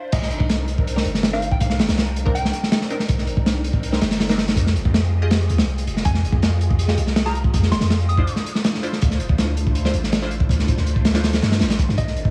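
Drum and bass with a jungle flavour, this frenetic yet nostalgic passage, cut from a longer piece, runs at 162 BPM in C minor and sits entirely within a drop. A crunchy breakbeat kit of kick, snare, hi-hat and crash cymbal drives it from start to finish, sitting up front with a saturated, gritty character, a tight kick, a medium-tuned snare and dark cymbals under a rolled-off top. Beneath it, a long, sustained 808-style bass holds a deep, mellow sine tone that decays after each fast attack. From 1.0 seconds a filtered dub chord stab sits in the background, its muted, detuned plucks coloured by phaser, cassette-tape wear and dub echo as the harmony moves from Cm9 to Fm9 to Dm9. A soft struck synth lead with a round, keys-like FM voice appears in brief phrases in a high register, warbling with chorus and tremolo and trailing dub echo for a vintage feel. Vinyl crackle and a dry studio ambience frame the whole passage.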